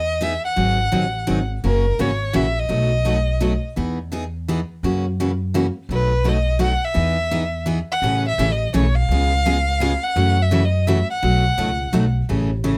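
Lively and charming, this short cut from a longer piece is acoustic string swing in the jazz manouche style, moving at 169 BPM in a swung 3/4 in E major. A rich, focused violin carries the melody with bowed vibrato and a slightly boxy tone, playing from the start, falling away at 3.6 seconds and returning at 5.9 seconds. Beneath it, an upright bass played pizzicato on gut strings gives a woody, thumpy pulse throughout. A picked steel-string acoustic guitar joins at 0.2 seconds with bright, full-bodied accompaniment, its fresh strings letting a little finger squeak through. Chords such as Emaj7, G#7, F#7 and B7 shape the opening section, and the second section turns to Amaj7, C#7 and F#m7 before landing on B7. Close, detailed microphones keep all three players up front, with a light reverb around them.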